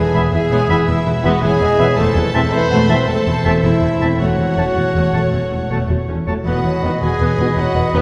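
Heroic adventure film score in E major at 108 BPM in 12/8, soaring and triumphant, where a bowed violin section with vibrato carries the melody, while a hollow silver flute, a second violin line, a distant clarinet and an oboe weave counter-lines above lush violas, mellow French horns and very quiet trombones holding sustained chords, vintage-toned trumpet stabs and ringing thumb-plucked harp arpeggios, all anchored by rich double basses and cellos on a low E as the harmony moves through E, Am/E, F#m/E and B/E, heard from further back in a warm, reverberant concert hall in this short excerpt from a longer piece.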